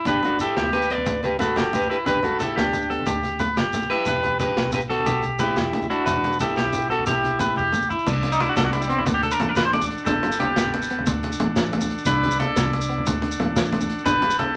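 The sound is a joyful highlife guitar band in a wet club reverb, heard as a short cut from a longer piece moving at 120 BPM in a straight 12/8 in G major, with the tuning set at A4 = 445 Hz. Two up-front, twangy electric guitars sit at the edge of break-up: one fingers arpeggios throughout, while the other picks a melody until 7.7 seconds. Underneath, a clean, compressed electric guitar plays accompaniment in the background through spring reverb, and a round, foam-muted fingered bass holds the low end. A muffled, lo-fi vintage drum kit with dark cymbals and a tight kick joins bright, saturated congas and a grainy, mellow shekere. After a drum fill at 7.6 seconds, the clean guitar takes a solo from 8.1 seconds as a buzzy combo organ enters with sustained chords, and the harmony moves from Gadd9 and Em to a Cadd9, D and Gadd9 cycle.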